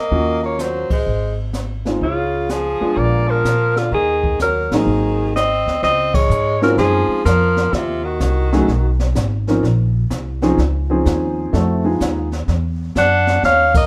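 A moderate large-studio reverb surrounds this playful, swinging small-group jazz in Db major at 126 BPM, cut from a longer piece. Up front, a vintage-toned alto saxophone with vibrato, subtone and scooped notes carries the melody while a forceful, edgy tenor saxophone plays a second line beneath it; both stop at 9.0 seconds and return briefly at 13.0 seconds. An intimate grand piano with audible action noise accompanies until 12.3 seconds, over a woody pizzicato upright bass and a distant brush kit with a high-tuned snare and boomy kick, as band accents punctuate the groove.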